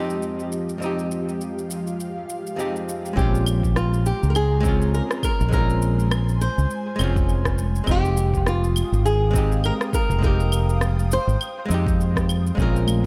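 A relaxed sunset chillout groove at 102 BPM in 4/4, with a swung sixteenth feel in F minor, opens on a dark, clean hollow-body archtop guitar with dub echo and an ethereal, detuned pad of slow-attack chords under a filter sweep, moving from Fm9 to Bbm9 and back. A layered electronic shaker, claves and rim click in studio reverb join almost at once. At 3.2 seconds a deep electronic kick, a round, up-front fretless bass and a fingerpicked flamenco guitar melody with fresh strings and dub echo arrive, and hard-handed bongos and congas surface in the background at 12.6 seconds of this echo-heavy, lightly reverberant cut from a longer piece.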